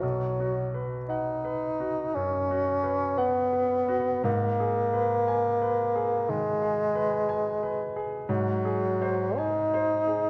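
A moderate concert hall reverb lingers for about 2.0 seconds around a dark production, giving this short cut from a longer classical piece a lyrical, romantic glow. The duo moves slowly in 4/4 at roughly 53-61 BPM, with a rubato feel and tuning set to A4 = 444 Hz. Up front, a warm bassoon carries the solo melody between F#3 and D#4, its tone touched by light vibrato and shaped in a classical style. A bright, brilliant grand piano accompanies it throughout the 10.3 seconds, spanning B1 to G#5 with a natural sound, also placed close but sitting beneath the bassoon in level. The harmony rests on B, turns to G#m at 4.3 seconds, and reaches G#7 at 8.3 seconds.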